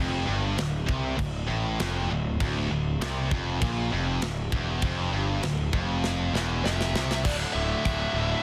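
Heavy and epic, this short heavy metal passage, cut from a longer piece, drives at 99 BPM in a straight 4/4 in D minor. A bright, double-tracked high-gain guitar riff sits up front in the low register from the start, alongside a growly fuzz bass, picked and overdriven, that blends a direct and amped tone. A tight metal drum kit enters at 0.6 seconds with a medium-tuned snare, a tight, softly clipped kick, and crash and china cymbals, heard in a big room with a mid-forward character. During a drum fill from 6.0 seconds, a dark, distorted lead guitar with delay adds a high melody at 6.6 seconds. The harmony moves from D minor to a D power chord at 7.2 seconds, where the groove drops into half time. The sound is dry, dense and heavily limited in a modern master.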